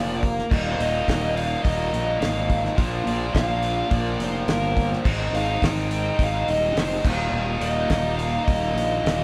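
Recorded by a band playing live in one room with a moderate studio reverb, this classic rock passage, cut from a longer piece, has a live, moderately reverberant sound. The mood is confident and sunny, in a straight 4/4 feel, with the chords moving from Bb to Eb, Bb, Ab and back to Eb. A double-tracked, distorted electric guitar sits up front with a bright, picked riff. A fingered electric bass, also up front, growls low with punchy fuzz. A damped 70s drum kit enters at 0.2 seconds, dry and rolled-off on top, with a fat snare, a tight kick, hi-hat and crash cymbal. Over the band, an overdriven lead guitar carries the melody in a dark, smooth tone.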